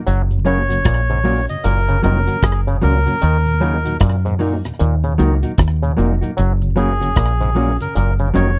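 A relaxed 76 BPM pulse in 4/4, swung at 62% on the sixteenths, drives this short roots reggae passage in F# major, which stays on an F# chord throughout and carries a laid-back, uplifting mood. A deep reggae drum kit with a tight kick, hi-hat and rim click sits up front with a slapback echo, alongside a dark, round, punchy fingered electric bass with a foam-muted tone, while a vintage, band-limited cabasa sits in the background. From 0.1 seconds an overdriven clav, stringy and percussive through a combo amp with auto-wah, plays arpeggios. A soft, flute-like tonewheel organ with key click and a slow rotary speaker joins at 0.3 seconds to fill in the background, and a clean, compressed electric guitar with tape echo adds further accompaniment. The melody comes from a reedy, breathy, nasal melodica with tape echo, entering at 0.5 seconds. The sound is a dry, close 1970s-style studio recording with little reverb, cut from a longer piece.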